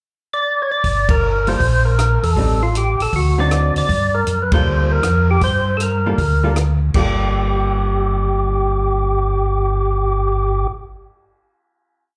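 A percussive, lightly overdriven tonewheel organ opens with a brief pickup at 0.3 seconds before a dark, round organ bass in a two-feel, a dry cocktail drum kit keeping time on the hi-hat with punchy kick, and a clean hollow-body guitar comping in syncopated chord shapes from 1.5 seconds join this late-night, soulful G minor soul jazz organ trio at a swung 157 BPM, its hook phrases riding a slow rotary speaker and slapback echo through band accents and a Gm to Am7b5, D7b9 and Gm9 progression into a final chord held after the drums stop at 7.1 seconds, all heard as a live gig through the club's PA.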